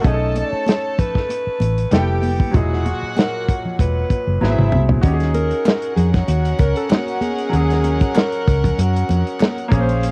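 Bittersweet and cinematic, this short excerpt of lush 1970s-style soul at 96 BPM sets a jazz-style alto saxophone melody over a floating, sul tasto violin section, an intimate baby grand piano with audible action noise, a round, foam-muted fingered electric bass and a dry, muffled soul drum kit with a tight kick, joined by bright, high-tuned congas from 0.4 seconds, a drum fill at 4.4 seconds and very quiet, hollow group handclaps from 5.7 seconds, all moving through rich extended chords in a close, cassette-tinged home recording with little reverb.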